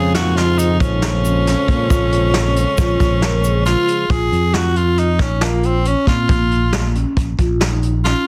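Progressive instrumental band music in a driving, brooding 5/4, cut from a longer piece, where a raspy, gritty tenor saxophone carries the melody up front over a round, dark fretless bass and a vintage brush kit with a punchy kick and softly clipped snare. A distant, roomy trombone with scooped notes and digital delay, a piping, lightly overdriven tonewheel organ with key click through a stopped rotary speaker, and a grainy shaker in the background all drop out by about 4.1 seconds as the chords move from Bbm7 to Bbm. Ringing soft-mallet vibraphone arpeggios with fast motor vibrato and delay continue to the end under light studio reverb and a dense, heavily limited modern master.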